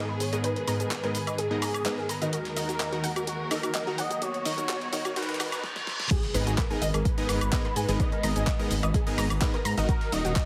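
Progressive house at 127 BPM in G# minor, expansive and driving, where a smooth, expressive synth lead with chorus and tape echo sings over lush bowed strings, a soft round pluck arpeggio with cassette grit, and punchy supersaw stabs whose low-pass filter sweeps through a build-up, while a very quiet riser and reverse cymbal, a gritty sampler-style breakbeat kit and a deep house kit of cabasa, handclaps, woodblock and fat snare drive toward the drop at 6.1 seconds, when an up-front deep kick lands with an impact and a dark, rumbling detuned saw bass follows moments later, all heard through a heavily compressed radio-style sound.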